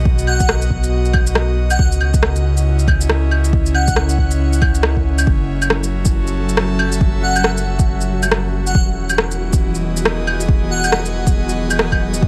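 A breathy, chorused pad and a round, soft dub sub bass open this melancholic, ghostly future garage excerpt at 138 BPM in F# dorian, both pumping under sidechain beside an overdriven deep kick and an up-front, overdriven layer of electronic shaker, claves and rim click with a swung 16th feel, while an airy, dreamy lead with detuned unison, vibrato and dub echo sounds a held F#5 in two phrases, and a grainy, flickering granular texture drifts in the background from 6.0 seconds, as the chords move from B and C#madd9 to F#m7 and Emaj7 amid light digital ambience and vinyl crackle.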